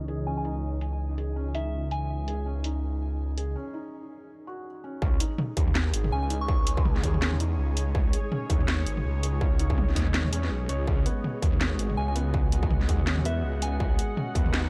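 Tense and heavy, this half-time drum and bass cut at 164 BPM in C# minor opens over a deep, moody ambient pad with sidechain pumping, a felt-muted upright piano playing soft arpeggios through a filter sweep and digital delay, a swirling, saturated detuned saw bass held up front, and a faint flickering granular texture, while a pure FM synth bell places gentle chorused phrases above. A layered drum kit with a cracking snare and bright hats drives the groove with a swung sixteenth feel, carrying on through a brief break at 3.6 s before the drop at 5.0 s brings in a distorted, tape-warm electronic kick. The production is dark and dry, shifting from C#madd9 to C#sus2 at the drop.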